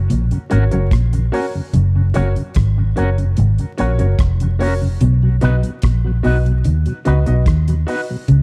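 A straight 4/4 roots reggae groove with an uplifting, sunny mood rides on a dry, damped 70s drum kit with tight kick, hi-hat and rim click, and a round, foam-muted fingered electric bass up front, while a twangy clean electric guitar riff with phaser sits in the background beside soft-handed, very quiet congas, a mellow tonewheel organ turning through a slow rotary speaker with key click, intimate baby grand piano stabs with audible action noise, and a picked envelope-filter guitar with tremolo and tape echo, the chords moving from F# to B at 5.0 s in this excerpt's small room ambience, set in a dark, warm production laced with vinyl crackle.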